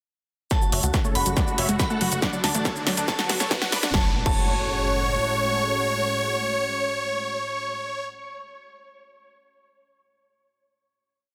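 Euphoric and driving, this short uplifting trance piece opens on a build where a distorted, overdriven four-on-the-floor kick, a punchy analog drum machine with snare, hats, shaker and crash, and a tight, galloping sawtooth sequencer bass push forward while filter sweeps open up the huge detuned supersaw lead and the lush, warbling unison pluck arpeggios. The supersaw carries a repeating sixteenth-note riff in thirds and sixths, with a glassy FM bell riff in the background, a silky, evolving string pad with ensemble chorus, and very quiet riser and impact effects, while sidechain pumping breathes through the lead, pad, pluck and bass. The drums and pluck stop at 4.4 seconds, and the lead, bell and pad ring out over the final chord, all in a dense, heavily limited modern master with light reverb.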